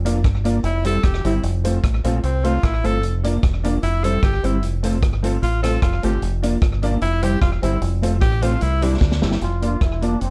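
A mellow, chorused electric guitar and a round, punchy dub bass open this upbeat, bouncy ska excerpt in F major at 151 BPM, joined by a worn, woody, slightly detuned upright piano playing stabs and a punchy vintage drum kit with a rolled-off top, while a close-miked tenor saxophone with vibrato carries the melody from 0.6 seconds until a drum fill at 9.0 seconds hands over to a distant, roomy trombone at 9.4 seconds, the horns bathed in slapback echo and plate reverb within a dark production.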